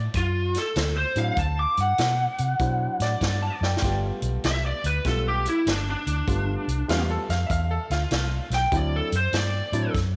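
Electric blues shuffle with a rollicking, laid-back swing, heard in a short cut from a longer piece. A lead guitar through a small cranked amp carries the melody up front, its overdriven, picked tone sounding warm and lo-fi. Underneath, a vintage muted fingered electric bass sits forward in the mix with a round, dark, foam-muted sound and tube saturation, while a swinging big-band drum kit supplies hi-hat, a punchy kick and a medium-tuned snare in a natural studio room, with a drum fill at 3.5 seconds. A bright upright piano adds a second line with a brilliant, woody, slightly detuned character until 8.4 seconds, and a dark baby grand enters at 1.2 seconds as mellow, intimate accompaniment with audible action noise. The harmony moves from D9 to G9 and back to D9, all set in light reverb and studio ambience.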